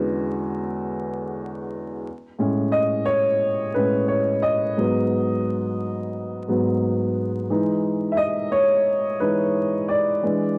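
Nostalgic and cosy, this short hip hop cut from a longer piece features a lone upright piano, dark, mellow and woody with long sustain, sitting up front through cassette-tape colouring and a low-pass filter, with a swung 16th-note feel moving from an E13 opening into a solo from 2.1 seconds over Amaj7, G#m7 and Emaj7 chords, all set in a moderate studio reverb on a homespun cassette recording dusted with vinyl crackle.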